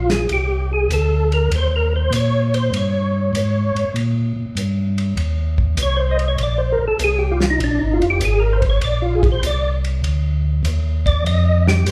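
A percussive tonewheel organ carries the melody and solos throughout, its round, clean tone marked by third-harmonic percussion, chorus vibrato and a slow rotary speaker. This soulful, bluesy soul jazz organ trio cut swings at 98 BPM in Bb mixolydian, moving from Bb7 to Eb7 at 1.5 seconds and back at 6.4 seconds. A second, mellow organ with audible key click plays the bass line through a stationary speaker, while an acoustic soul drum kit with dark cymbals, a tight kick and a rolled-off top sits lower in the mix, and the whole band sounds live in one room with a wet, large studio reverb.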